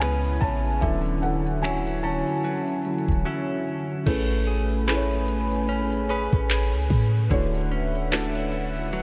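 A muted, felt-dampened upright piano with audible action noise carries a solo from the start, and a break arrives at 3.3 seconds in this tender, smooth contemporary R&B fragment at 74 BPM in A major, moving between Amaj9 and Dmaj9 over swung sixteenths, where a hollow, flute-like pad with chorus holds sustained chords, a clean direct-recorded electric guitar plays arpeggios through analog delay, a deep, boomy 808-style bass sits up front, and a produced drum kit adds a knocking kick, smooth hi-hat, finger snaps, handclaps and crash cymbal, all soaked in a huge, dreamy reverb.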